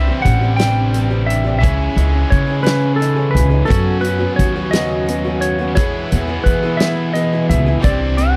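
An up-front, woody upright bass sits prominently in the mix in this short, hopeful cut from a longer folk rock and heartland rock piece, its pizzicato steel strings sounding growly and thumpy. Above it, a bright, twangy lap steel carries the melody with clean slide lines. A dark, boxy twelve-string acoustic guitar on old strings gives picked accompaniment, its octave-doubled strings adding a jangly shimmer. A biting, double-tracked overdriven electric guitar plays a riff underneath. A natural country drum kit in a small room enters at 0.3 seconds with a punchy kick, a medium-tuned snare and hi-hat, holding a slow 6/8 at 58 BPM with a straight feel. The sound is a dry, close 1970s-style studio recording in E major, moving through Cadd9, C#madd9, F#sus4 and E before returning to Cadd9.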